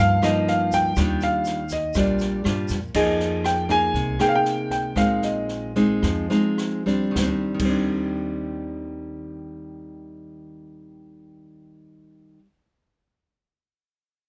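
Lightly reverberant and intimate, this sunny, romantic bossa nova excerpt sets an up-front concert grand piano melody with audible action noise over fingerpicked classical nylon-string guitar with finger squeak, woody pizzicato upright bass, a natural-sounding open jazz kit with dark cymbals, rim click and a boomy kick, and a grainy, mellow tube shaker heard only until 2.9 seconds, with the music slowing down between 2.9 and 7.2 seconds.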